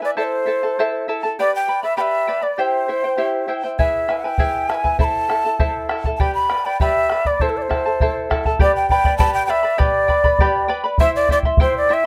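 A mellow, airy cane quena carries a wistful, melancholic melody from the first moment, its crisp chiff and expressive vibrato sitting close and up front over a shimmering, fingerpicked charango whose double strings ring out in this Andean folk excerpt at 100 BPM in 2/4. At 3.8 seconds a round bombo enters, adding a live-room thump beneath the chord progression as the piece moves into a new section at 8.6 seconds, all wrapped in light reverb before it is cut off around 12 seconds.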